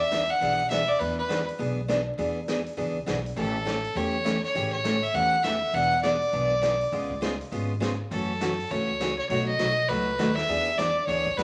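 Down-home and playful, this swinging western country piece puts a clear, biting fiddle melody with light vibrato up front beside a bright, full-bodied picked dreadnought acoustic guitar with audible finger squeak, over a woody, dark pizzicato upright bass and a distant, roomy big-band drum kit with a boomy kick that enters at 0.1 s, set in a large studio reverb with vinyl crackle as the chords move from E7 through C#7b9 and B9 back to E7.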